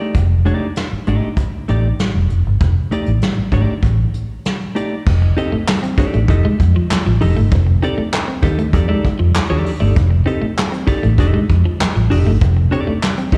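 Energetic and gritty, this funk excerpt moves at 98 BPM in a straight 4/4 in F mixolydian, sitting on an F13 chord and heard as a live gig through a venue's PA with recital hall reverb. A vintage brush drum kit with dark cymbals, a punchy kick and handclaps sits up front beside a round, foam-muted fingered bass, while a dark, compressed clean electric guitar with slapback echo plays accompaniment from the start. At 5.2 seconds a bright, picked clean guitar enters with a riff, its warbly pitch drift and slapback echo adding character.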